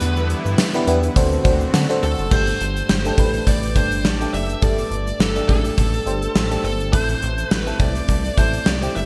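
A bright, polished 1980s-style digital sound sits in a lush hall reverb, giving this urgent, moody pop fragment, cut from a longer piece, a sheen at 104 BPM with a light sixteenth-note swing. Up front, the gated drum kit plays with a punchy kick, a medium-tuned snare, bright cymbals, hi-hat, crash and tambourine, all carried by a gated room sound, while a grainy egg shaker sits very quietly beneath. A chorused synth bass with a glossy, retro pulse-and-sawtooth tone and a plucked filter attack anchors the low end as the harmony moves from Em7 to D7. A glassy, bell-like FM electric piano, treated with chorus and phaser, fills out the accompaniment and steps forward with a short fill from 1.5 to 2.3 seconds, just as a thick, detuned unison pad in the background drops away. From the very start and on through the Gsus2 and later Am chords, an overdriven, distorted lead guitar carries a bluesy picked melody across the whole passage.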